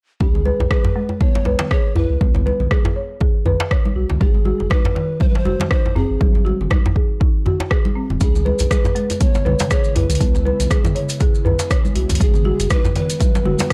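An overdriven, punchy electronic kick drives this spiritual, earthy afro house excerpt at 120 BPM in C# minor, joined by a deep round sub bass with tube saturation, a woody marimba arpeggiating through a low-pass filter, hard-handed djembe and congas, and a hollow, chiffy pan flute melody with analog delay, while a metallic-hatted afro-pop kit enters at 0.7 seconds, grainy maracas at 8.2 seconds, and an ethereal phased pad at 9.0 seconds, all within a gritty, cassette-tinged small room.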